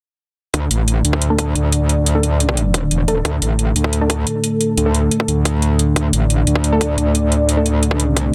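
Mechanical and aggressive, this dark technical drum and bass cut from a longer piece runs at 177 BPM in a straight 4/4, with a tight, up-front electronic kick and tape-warm metallic hi-hats driving from 0.5 seconds under a saturated, wobbling FM bass that sits up front with chorus, while a deep, moody detuned pad with sidechain pumping holds sustained chords from 0.9 seconds and a bold, punchy orchestra-hit-like stab with a filter sweep, reverb and digital delay sits brightly in the background from 1.3 seconds.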